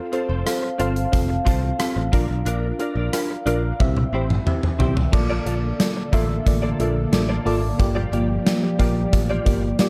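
A warbling FM electric piano with phaser opens this dramatic, nostalgic slice of 1980s-style pop, joined almost at once by a clean, scooped electric guitar riff washed in chorus and tape echo, a polished gated drum kit with bright cymbals and a punchy kick, and a growly picked bass. A drum fill from 3.8 to 5.1 seconds leads into a second passage where a mellow string machine voiced as cellos enters in the background with soft, sustained chords as the harmony shifts from Bbmaj7 to Gm7. The production is dark, with light reverb and a small-room ambience.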